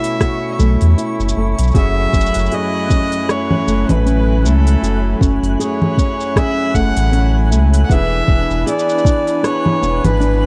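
Autumnal and delicate, this folktronica excerpt sets a close, reedy violin melody with an airy, gut-string bow and tape echo over thumb-plucked flamenco guitar arpeggios and a distant, smooth string quartet holding sustained chords. Beneath them, a round sine sub bass sits up front from 0.6 seconds, and a soft electronic kick joins an organic electronic kit of congas, crisp hi-hat, rim click and shaker, swung lightly on the sixteenths. High in the background, a twinkling granular texture with an octave-up shimmer and its own reverb glints above the dry, intimate 1970s-style studio sound as the chords move from B7sus4 to F#m9 and E7.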